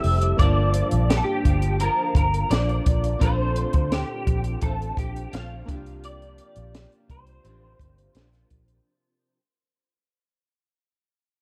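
A straight, unhurried 4/4 groove at 85 BPM comes from a compact cocktail drum kit of kick, snare and hi-hat, sitting up front with a punchy kick, a high-tuned snare and a dark, rolled-off top. Alongside it, a vintage fingered electric bass, foam-muted and round, holds the low end, also close and prominent. A fingerpicked nylon-string guitar supplies classical-toned accompaniment, with audible finger squeak and a shimmer of ensemble chorus and vibrato, while analog keys built from pulse and sawtooth waves sit in the background with fast-attack, decaying notes, filter sweeps and chorus. Over the top, a picked electric guitar through a small old amp carries the melody with a slightly broken-up, compressed, lo-fi tone, colored by ensemble chorus and analog delay. This laid-back, sunny piece of indie and bedroom pop, tuned to A4 = 438 Hz, moves through Gm7, Bbmaj9 and C9sus4 in a dark, warm mix with little reverb, and the whole cut from a longer piece fades out across its roughly 9 seconds.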